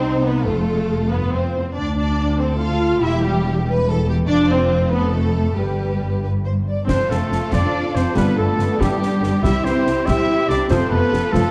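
A lush string orchestra opens this adventurous, soaring film-score passage in 6/8, with a focused violin melody over a rich second violin line in the background, an expressive viola part with portamento, an expressive cello line, and a dark, woody double bass section up front. At 6.9 seconds a distant, roomy solo trumpet adds stabs and a close, dry battery of snare, dark clash cymbals and bass drum joins, followed at 7.5 seconds by mellow, tight French horn chords. The heroic mood is framed by a moderate scoring-stage reverb and a dark, warm production.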